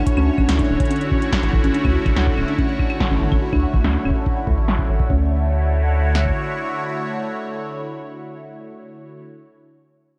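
Playful and intricate, this IDM fragment, cut from a longer piece, moves in a straight 4/4 over a Dmaj7 chord, with a dark, warm production set in a moderate echo-chamber reverb. A swirling, detuned sawtooth pad with phaser and chorus holds soft-attack sustained chords throughout, while a rubbery, hollow square bass sits up front with a bouncy filter pluck. A harp-like triangle pluck rings out arpeggios through chorus, delay and vintage 12-bit sampler grit. Farther back, a bright, resonant texture bubbles with random filter steps, chorus and its own reverb. Two analog drum machines, re-recorded in a large room with tape character, supply a deep kick, punchy snares, metallic hats and claves, the quieter kit run through low-pass filters and a digital delay. Filter sweeps move across the drums, bass and pluck until a new section arrives at 5.1 seconds; the drums drop out by 6.4 seconds and the pad carries on alone to 9.2 seconds.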